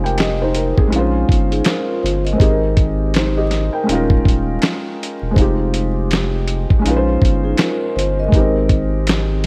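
Lo-fi hip hop at 81 BPM in Ab major, mellow and nostalgic, where a soft, felt-muted upright piano with cassette-tape color carries the Fm9 to Bbm11 to Abmaj7 chords over a deep, saturated sine sub bass, a gritty, compressed sampler-style drum kit with a thumpy kick and fat snare, barely audible close finger snaps, and a ringing vibraphone with soft mallets and analog delay that surfaces briefly at 1.5 and 7.4 seconds, all in a small room with vinyl crackle in this short cut from a longer piece.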